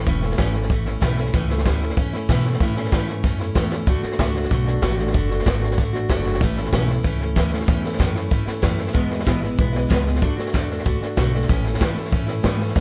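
Rockabilly excerpt at 189 BPM in A major, retro and rollicking, with a bright, full-bodied picked steel-string acoustic guitar up front, a woody, thumpy pizzicato upright bass on gut strings, and a brushed drum kit with a boomy kick and medium-tuned snare. The dry, natural small-room sound keeps the trio close, and a drum fill at 3.7 seconds leads into the move from A to D, with the changes running through A, E and D before landing back on A.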